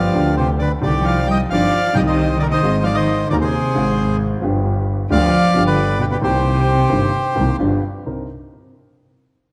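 A reedy, up-front bandoneon carries the melody in this sultry, tense tango fragment with a rubato feel, over a bowed cello playing an airy, intimate second line with light vibrato, a woody, slightly detuned upright piano whose action noise is audible, and a focused, bowed double bass with vibrato, all set in the wet reverb of a scoring stage.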